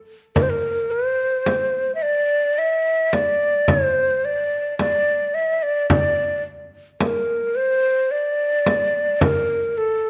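A breathy, end-blown reed-cane ney and a close, dry frame drum enter together at 0.4 seconds in this soulful, longing fragment of a Turkish makam piece in D makam ussak, moving at 108 BPM in a straight 10/8. The ney carries the melody between A4 and E5-26c, sitting close and up front with vibrato and a tongued attack, while the acoustic frame drum, also up front with a warm body, stops at 9.5 seconds and the ney continues to 10.1. A moderate recital-hall reverb surrounds the ensemble, and the sound tops out at 7.5 kHz.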